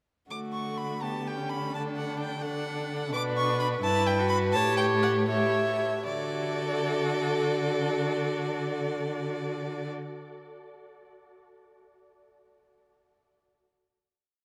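Drenched in a wet cathedral reverb that rings for 6.9 seconds in a vast, echoing space, this short, complete classical-period movement for string quartet feels lively and spirited, moving in a rubato 6/8 in D major at 75-87 BPM. A rich, focused first violin carries the bowed melody up front with vibrato. The expressive second violin and soft-attacked viola play chords in the rhythm of the tune and sustained chords, sliding with portamento, and a close, warm cello holds the sustained bass up front. The tempo slows from 2.4 to 6.1 seconds through Bm, Em/G and A7, arriving on a final D chord that hangs in the hall until 9.2 seconds.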